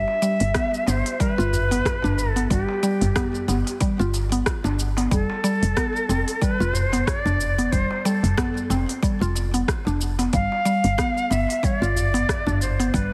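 A vibrato-laden cedar flute with a pure, chiffy tone and delay carries the melody over mellow, chorused mallet-like synth pluck arpeggios with digital delay, a round, woody FM bass pumping from sidechain compression, a deep clay-shell darbuka in the background, an afro-pop kit of smooth hi-hats, rim clicks and shaker, and a deep, layered electronic kick entering at 0.6 seconds, all in this earthy organic downtempo fragment at 92 BPM with swung 16ths in G mixolydian, moving through G, Fadd9 and G7 under light reverb and a heavily compressed, radio-like sound.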